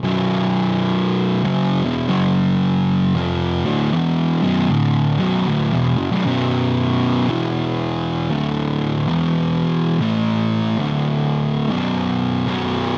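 A double-tracked, distorted electric fuzz guitar sits up front and plays unaccompanied from 0.0 to 13.0 s in this sludgy, brooding metal excerpt, picking chords in B minor at a slow 77 BPM with swung eighths, then shifting at 6.3 s into a second passage that moves through E5, D5 and A5 before settling back on B5, all wrapped in light reverb and a dark, warm production.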